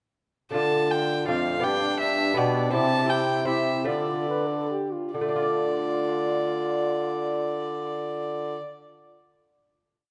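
A rustic, solemn Renaissance-style consort dance in triple time, in which a close, nasal violin with an airy, gut-string bow carries the melody up front while a bright, distant trombone adds sustained chords in the rhythm of the tune. A delicate lute with double strings supplies fingerpicked, rolled chords, and a mellow, vintage bassoon holds a sustained bass line with passing notes. The consort slows from 2.2 seconds and settles onto a final chord at 5.1 seconds, all within a moderate concert hall reverb.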